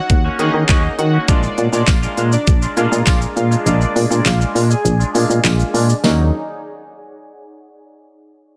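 Dance-pop at 101 BPM in Eb minor, confident yet bittersweet, this short excerpt sets a soft, detuned supersaw melody over a very quiet ethereal pad, a twangy clean electric guitar riff with analog chorus, a clear background grand piano, a punchy, round FM bass pumping against a knocking kick, fat snare, crisp hats, handclaps and shaker, and a jingly tambourine entering at 1.9 s, while a filter sweep runs until 6.0 s and the kick drops out between 3.7 and 6.0 s, all moving between Ebm7 and Bb7 in a dry mix.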